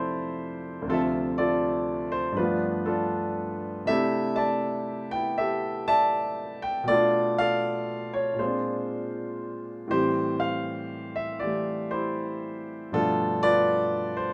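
Solo jazz in C major at a relaxed, swinging 80 BPM in 4/4, played on a warm concert grand piano that sits up front with an open tone and deep bass across its D2 to A5 range, moving through extended chords such as Fmaj7, G9 and Bm7b5 within a moderate studio reverb, all in a 14.3-second excerpt cut from a longer piece.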